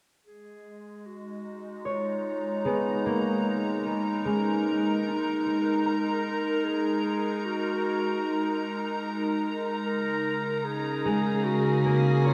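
A mellow, smooth-topped clarinet fades in at 0.3 seconds, playing a solo classical-style melody through tape echo in this melancholic, reflective ambient piece in G# minor, moving at 75 BPM in 3/4. An evolving wavetable pad soon follows with sustained chords, its detuned, warbling vintage tone brightened by chorus and built-in reverb and sitting up front in the mix. Behind it, an airy, breathy noise layer fades in, tuned like wind and washed in shimmer reverb. From 1.9 seconds a concert harp joins with bright, thumb-plucked arpeggios that ring through their own tape echo. The harmony rests on G#madd9 before shifting to C#sus4 at 9.9 seconds, and the whole passage sits in a vast cathedral-like space whose long reverb tail lingers around every note.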